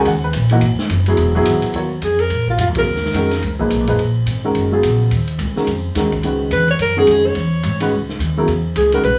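Spiritual and intense, this brief modal jazz excerpt in Eb minor swings at 214 BPM, with an intimate baby grand piano voicing minor-ninth chords over woody pizzicato upright bass and a distant, roomy big-band drum kit with a boomy kick, while a breathy alto saxophone with vibrato and scooped notes takes the melody from 2.0 s and returns at 6.5 s, a band accent landing at 2.7 s in a small club-like room.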